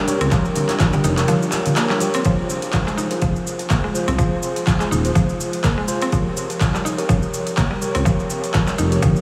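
Earthy and spiritual, this dreamy afro house excerpt at 124 BPM in F minor opens with an airy pad that drops out after 2.2 seconds, alongside bright conga hits in the background, all set over a punchy overdriven kick, metallic hats and handclaps, a grainy cabasa, a smooth gliding saturated bass with portamento, woody mallet-like plucked arpeggios with delay, and mellow electric piano stabs, with the pad, bass, plucks and piano pumping against the kick in a mix soaked in huge ambient reverb.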